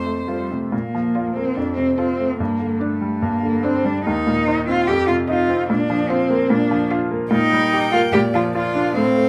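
Lively and cheerful, this quick classical-period piano trio movement in Bb major moves at 146 BPM in 4/4 with a rubato feel, as a rich, smooth violin carries the melody with vibrato, a warm cello sings a second line with soft attacks and expressive portamento, and a bright, brilliant grand piano with short sustain supplies up-front accompaniment, all three playing throughout this 9.3-second cut from a longer piece in a moderate large studio reverb, passing from F through Bb, Gm and Cm7/Eb before settling back on Bb.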